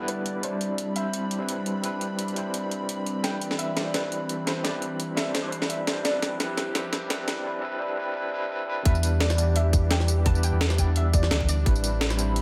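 A deep, full sub bass with an octave layer sits up front in this uplifting liquid drum and bass excerpt at 171 BPM, with a light swing on the sixteenths. An overdriven, barky tine electric piano, played through a combo amp, pulses with fast tremolo and a filter sweep during the build-up, alongside a gritty, compressed breakbeat kit up front with a high-tuned snare, hi-hat and tambourine. Beneath them sit an airy, breathy pad and a soft, round pluck melody in the background. After a drum fill and a break at 7.5 seconds, the drop lands at 8.9 seconds as a tight, layered electronic kick enters, and the dreamy mix is soaked in plate reverb over chords moving from Am11 through Cmaj7 and Dm11 to Em7.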